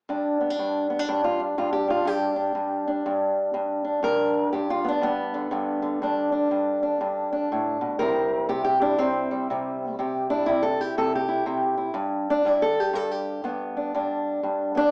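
A fingerpicked old ladder-braced acoustic guitar opens this short excerpt of acoustic country blues, playing solo and up front with a dark, woody, boxy tone from its old strings. At 121 BPM in 4/4 with a swung eighth-note feel, the soulful, swaggering passage sits in G major, moving from G to C at 8.0 seconds and back to G at 12.0 seconds. A moderate large-studio reverb and a small-speaker sound give it the feel of a live performance in one room.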